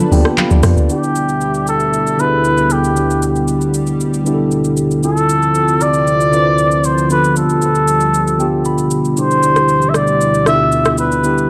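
This deep, soulful amapiano cut opens on a short break, with a mellow tine electric piano fill sounding through its built-in speakers over a lush, detuned unison pad, a smooth electronic drum kit of handclaps, hi-hat, rim click and shaker, and a brief round, percussive log drum bass with congas tucked in the background. At 0.9 seconds a cup-muted trumpet takes the solo melody up front, veiled and soft with vibrato and a jazz-style phrasing, its distant, roomy tone trailed by digital delay. The clean electric piano keeps up the accompaniment throughout and slips in another fill at 8.1 seconds, while the thick, chorused pad sustains bright chords moving from G9/D through Em7/D and Dm7 to Cmaj7/D. The drums sit low in the mix at a steady 116 BPM in straight 4/4, their tape-warm, produced sound keeping things relaxed. Light reverb and a dark, warm production give this excerpt from a longer piece its deep, soulful glow.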